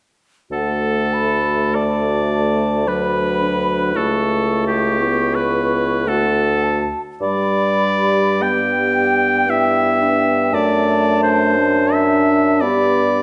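Classical slow movement for wind quintet, serene and lyrical, unfolding in a gently rubato triple metre with uneven beats across this fragment of a longer piece. A hollow silver flute carries the melody with vibrato and a crisp attack, while an up-front, clear oboe sings a second line. A softly attacked French horn and a close-miked clarinet set further back provide the accompaniment, and a mellow bassoon with light vibrato anchors the bass, all sounding from 0.5 to 13.2 seconds in a reverberant recital hall.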